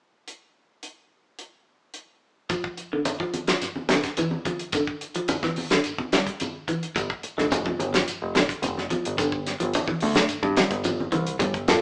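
Afrobeat with an intense, defiant mood, cut from a longer piece, played by a band live in one room with a moderate large studio reverb and a small speaker sound. A damped 70s drum kit opens the track alone at 0.3 seconds, its dry, fat snare and tight kick sitting up front alongside the hi-hat. At 2.5 seconds a clean, hollow-body semi-hollow electric guitar begins picked arpeggios over a G5 chord, while a grainy, mellow shekere sits in the background, and low-tuned congas with a bright, thin skin and hard hands follow shortly after. A punchy, direct picked electric bass enters at 7.0 seconds and sits up front, giving the groove a firm low end. At the very close, a reedy, worn reed electric piano, slightly out of tune and heard through its built-in speakers, sounds only briefly.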